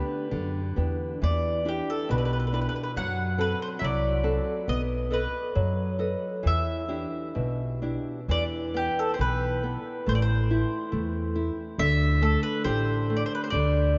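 This mournful, passionate fado-style ballad in E minor moves at a rubato 69 BPM in 2/4, with a picked, bright mandolin on double strings carrying the melody over a dark, boxy nylon-string guitar whose fingerpicking lets a finger squeak through. A warm pizzicato upright bass with steel strings joins at 0.3 s. All three instruments sit up front in a vast, echoing cathedral reverb with a rounded, muted top, and the harmony moves through G, Em7, F#dim and B7 before settling toward Am and Dsus4 in this excerpt from a longer piece.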